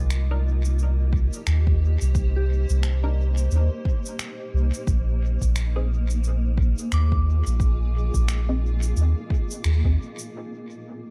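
A blurred, granular pad, a soft FM synth bell playing arpeggios through chorus, dub echo and a filter sweep, and a round, up-front sub bass open this hazy, spacious ambient dub excerpt in C minor at 88 BPM, swung on the 16ths and moving from Cm7 to Bb7sus4. Tape-tinged electronic finger snaps and cabasa, captured in a large room and sent through dub echo, arrive almost at once. Muted, full-bodied sawtooth chord stabs with phaser and echo follow, a deep, layered kick drum enters at 1.1 s, and the dry mix ends with a band accent just before the parts stop near 10 s.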